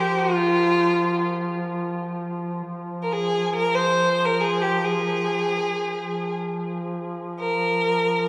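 Melancholic and hypnotic, this brief excerpt from a longer piece sits in the Persian modal tradition, unfolding in free time in F avaz esfahan with a tuning of A4 = 439 Hz. A single bowed violin carries the melody from 0.0 to 8.3 seconds, moving between F4 and C5 with a rich, focused tone, vibrato, and a distant yet up-front presence. Beneath it, a duduk holds a drone on F3 for the whole span, its warm folk-style sound also shaded with vibrato and placed up front, though it sits lower in level than the violin. The music repeats its opening material, with the first statement running to 2.7 seconds and a second carrying on to the close. A wet cathedral reverb with a long 6.0-second decay surrounds the pair, giving the sense of a church or concert hall.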